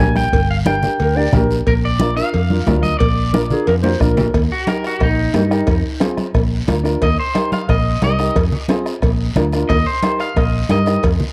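A twangy, slightly broken-up electric guitar carries the melody of this festive, danceable cumbia, bathed in spring reverb and tape echo, and takes a clean solo from 4.3 seconds on. A growling, gritty clarinet with scooped notes and vibrato adds a jazz-style second line until 4.3 seconds, over a dark, woody upright piano with audible action noise and a round, foam-muted electric bass sitting up front. Bright, damped congas, a soft-beaten bombo, ringing metal-shell timbales and cowbell, and a raspy guiro drive the groove, with a drum fill at 3.7 seconds, all captured in a dry, close 1970s-style studio sound.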